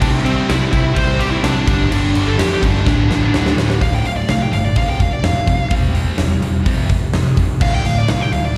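Hard rock with an aggressive, heavy mood, this short excerpt cut from a longer piece sounds like a live gig heard through a venue's PA, with light reverb and the air of a recital hall. A huge arena drum kit sits up front, with a fat snare, punchy kick, bright cymbals and hi-hat, and a drum fill from 2.9 to 3.8 seconds leads into a new section. A growly, amped electric bass anchors the low end, while a scooped high-gain guitar with distortion plays a riff in the background, joined by a very quiet overdriven guitar and a very quiet, double-tracked distorted guitar that drops out at 3.8 seconds. Over them, a dark high-gain lead guitar with distortion and slapback echo carries the melody up front, and from 3.8 seconds it takes a solo through to the end. The harmony moves through power chords on C, G, D and F, with a C over E chord along the way.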